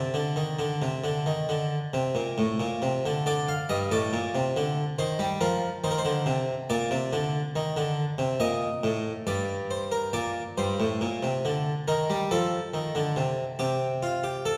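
Classical baroque-style two-part invention for solo harpsichord, joyful and lively in a straight 4/4, cut from a longer piece, where the brilliant, plucked Italian-style instrument with octave strings sits close and full up front, framed by the lingering reverb of a recital hall before its opening material returns at 10.1 seconds.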